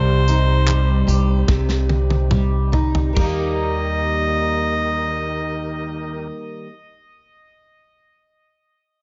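Acoustic pop in Eb major, carefree and sunny, moving at a relaxed 69-77 BPM in a straight 4/4 that slows through the opening and shifts from Cm to Eb at 3.2 seconds. A mellow, vintage harmonica carries the melody with scooped notes and a digital delay over a full-bodied, double-tracked fingerpicked steel-string acoustic guitar and a woody, thumpy pizzicato upright bass. A gritty, overdriven tonewheel organ holds sustained chords in the background with chorus vibrato and a stopped rotary speaker, while a loose indie drum kit with punchy kick, dark cymbals, handclaps and tambourine plays from 0.3 to 3.4 seconds, including a fill from 1.5 seconds, all in a dry sound with little reverb.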